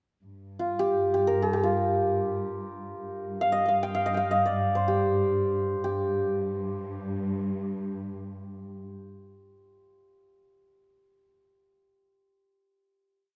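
A bright, shimmering santur sits up front with a soulful, longing modal melody full of ornaments, floating in free time through a Persian modal piece in G dastgah shur. Beneath it, a dark symphonic cello section holds a low G drone from 0.2 seconds, bowed and lush with vibrato and portamento. The recital hall lends a moderate reverb, and the short piece settles onto its final note at 5.8 seconds.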